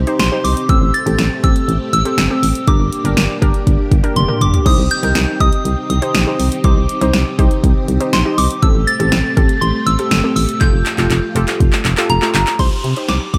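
A soft, pure FM synth bell carries the melody in a high register, its gentle tone coloured by chorus, phaser and a slapback echo. This short, nocturnal and melancholic synth-pop excerpt moves at 121 BPM in a straight 4/4. A deep house drum kit sits up front with a deep kick, punchy snare, handclaps, hi-hat, toms and crash, and fills at 4.2 seconds and from 10.6 to 12.6 seconds. Beneath it, a round, dark FM bass with a fast attack anchors the low end. A warbling, lo-fi pluck with a nasal edge and a filter sweep adds accompaniment, while a lush vintage string machine holds sustained chords through Cm, Am7, Gm and Fadd9 until 12.6 seconds. At that point an electronic downlifter joins the bell, pluck, bass and drums to close the clip, all set in light digital reverb.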